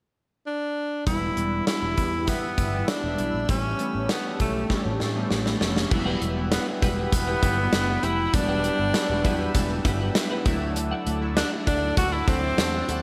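Nostalgic and moody, this 1980s-style pop excerpt opens with a clear, forceful tenor saxophone carrying the melody up front through digital delay, joined at 1.1 seconds by a gated drum kit with a tight kick, growly fretless electric bass, glossy chorused retro synth keys, a sweeping resonant pad and very quiet, round synth brass stabs. At 5.9 seconds the brass drops out after a drum fill, and a bright, twangy twelve-string electric guitar riff with chorus and delay arrives alongside a faint overdriven electric guitar, while the synth keys add a fill and the harmony moves from E minor through A7 to Emadd9 and Dadd9. A light reverb holds the mix together.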